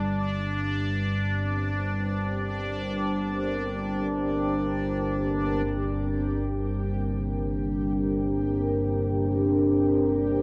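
In free time, this unsettling, cavernous dark ambient drone in G minor rests on a mellow, vintage analog drone of sawtooth and pulse waves that evolves and warbles under filter sweeps from 0.0 seconds, joined at 1.3 seconds by a deep, moody, detuned pad holding dark sustained chords up front, while a bright, resonant texture bubbles through random filter steps with chorus and shimmer reverb, the whole sound bathed in a long cathedral reverb and the drifting pitch of worn cassette tape in this excerpt from a longer piece.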